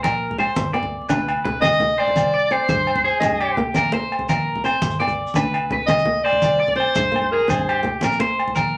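A wet studio reverb surrounds this danceable highlife guitar band excerpt in a straight 12/8, where a twangy, slightly broken-up electric guitar plays phaser-tinged arpeggios up front over a round, foam-muted fingered electric bass set back in the mix. Ringing, saturated agogo bells, low-tuned congas with thick skins and soft hands, and a grainy, mellow shekere in the background drive the groove, while a fingerpicked flamenco guitar with fresh strings adds acoustic accompaniment. At 1.6 seconds a bright, forceful clarinet enters as the up-front solo voice, its jazz-style vibrato sounding punchy yet distant over a warm minor progression that circles back to Cm.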